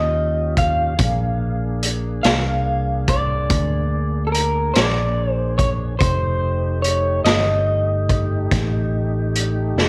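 Rollicking yet laid-back, this slow blues excerpt rolls along at 48 BPM in 12/8, moving through Eb7, Bb7 and F7 with a home-recorded cassette feel and light reverb. A dark, slightly broken-up electric guitar through a small old amp carries the lo-fi, compressed melody with spring reverb, while a round, amped fingered bass sits up front and a tonewheel organ holds clear sustained chords with key click, vibrato and a slow rotary speaker. A raw garage drum kit enters at 0.6 s with hi-hat, punchy kick and a medium-tuned snare, its gritty, saturated sound rolled off at the top.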